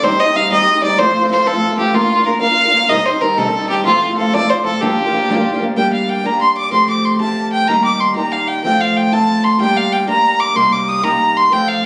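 Spirited and driving, this short Celtic folk excerpt moves at 125 BPM in 6/8 with a straight feel, centered on G minor and tuned slightly below standard pitch at A4 = 439 Hz. A single bowed fiddle carries the melody from start to finish, its tone nasal and smooth with a light vibrato and an even, up-front presence. Beneath it, a fingerpicked acoustic archtop guitar supplies accompaniment throughout, its fresh strings sounding boxy and close, with audible finger squeak adding a human touch. The harmony cycles through Cm, F and Bb before settling on Gm7, then shifts at 5.8 seconds into a second section that moves from Gm through Fadd9, Eb and F, closing on Cm7. A moderate spring reverb and club-like room ambience surround the pair, while the phone-in-the-room capture and vinyl crackle lend the sound a lo-fi, intimate character.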